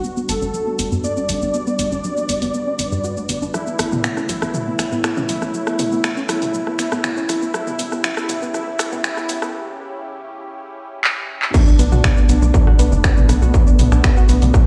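A dramatic, driving stretch of melodic techno in B minor at 120 BPM opens with a thick, detuned unison lead carrying the melody over a smooth, chorused analog pad in the background, a warbling, lo-fi pluck spinning arpeggios through chorus and delay, a tight, nasal sequencer bass, and a layered electronic drum kit of hats, snaps, handclaps, rim clicks, shaker, toms and crash cymbal. Filter sweeps on the pad and the arpeggio sound push a build-up through chords of Gmaj7, Aadd9 and C#dim, while sidechain pumping makes the lead, pad, pluck and bass breathe to the beat. A break arrives at 9.5 seconds, and a drum fill leads into the drop at 11.5 seconds. There a distorted, up-front electronic kick enters and hits loudest of all, as the harmony settles on Bm7. The lead's vibrato and tape echo, the pluck's mellow, dusty tone and a lush hall reverb sit in a big, bare-sounding room that gives the drums a roomy, re-recorded character in this cut from a longer piece.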